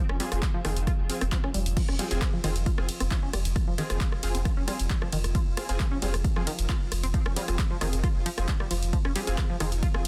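A dense, heavily limited, dry mix carries this intense, relentless excerpt of driving peak-time techno at 134 BPM in F minor, where an overdriven, up-front analog kick and a punchy drum machine of hi-hat, handclaps, rim click, ride and crash cymbals push a round sine sub bass, a dark, detuned sawtooth riff and aggressive ring-modulated rave stabs, the bass, riff and stabs pumping with the sidechain, while an eerie, warbling FM drone hovers in the background.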